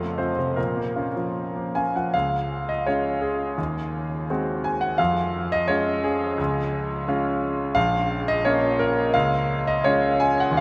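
Passionate and bittersweet, this short romantic character piece for solo piano sits in Db major and moves in a flexible rubato around 75-88 BPM in 2/4. A bright concert grand carries everything from the first note to 10.6 seconds, ranging from a deep bass at Bb1 up to Ab5, with a brilliant, polished tone, long sustain and audible action noise that keeps it intimate and up front. The opening phrase leans on F7 and Bbm before settling onto a Db chord at 2.1 seconds, where a new section begins. From there the harmony drifts through Ab7 over Eb and Db over F, then returns home by way of Bbm to Db. A huge, wet reverb places the instrument in a vast, echoing space, letting each chord ring into a long tail while the piano itself stays present and close. The passage is lifted from a longer work, so it feels like a glimpse into an unfolding musical thought.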